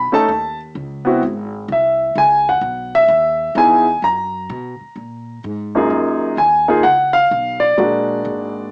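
A grand piano and an upright bass start together in this short, playful jazz trio excerpt, moving at a relaxed 128 BPM in 4/4 with a swung eighth-note feel and tuning set to A4 = 441 Hz. The piano carries the melody up front, its intimate, natural tone tinged with cassette-tape color and audible action noise as it ranges from F#2 up to B5. Beneath it, the pizzicato bass sounds woody and thumpy, its gut strings giving a warm, acoustic low end between G#1 and B2, sitting well behind the piano in level. The harmony drifts through rich chords such as C#sus2, C#m9 and F#add9 before a new section arrives at 5.9 seconds on F#maj13, closing on an A#aug7. A wet studio reverb and the small-speaker character of a home cassette recording wrap the pair in a cozy, lo-fi glow.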